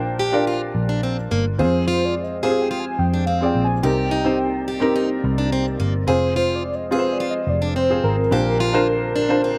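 Piano-driven pop at 107 BPM in Bb mixolydian, this uplifting, warm excerpt sets a velvety, chorused synth lead melody over a soft, felt-muted upright piano with audible action noise and a dark, round, foam-muted electric bass; a picked plugged-in steel-string acoustic guitar riff with finger squeak enters at 0.2 seconds, and a very quiet, lightly overdriven tonewheel organ with key click and slow rotary speaker holds sustained chords from 1.6 seconds, all moving through Bbadd9, Fm and Cm7 in a dry, outdoor sound.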